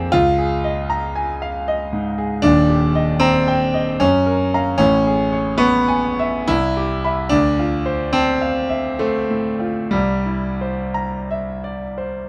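Mysterious and wistful, this impressionist classical excerpt for solo grand piano drifts in a rubato triple metre, cut from a longer piece. The clear, smooth piano sits up front with a vintage character, ranging from deep Eb1 to bright C#6 as lush seventh and ninth chords slide through unexpected shifts, from Db6/9 and Ebmaj7 to F#maj7, Amaj7 and Cmaj7 before settling on Dm9 and C9. Close, detailed microphones and light reverb give the instrument an intimate presence.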